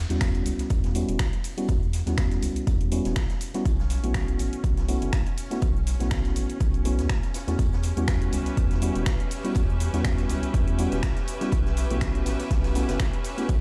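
A rubbery, hollow square-wave bass opens this hypnotic, deep house excerpt with sidechain pumping, joined almost at once by mellow tine electric piano stabs carrying a filter sweep and delay, an overdriven, punchy electronic kick drum up front, and an overdriven analog drum machine of finger snaps, hi-hat and shaker. An airy acoustic drum kit of hi-hat, snare and tambourine sits in the background, while a bright, bowed string section with vibrato enters distant at 3.7 seconds, pumping along as the harmony alternates between Em69 and B9sus4. The whole sounds as if played on a big sound system in a bare room, with a large studio reverb and a light sixteenth-note swing.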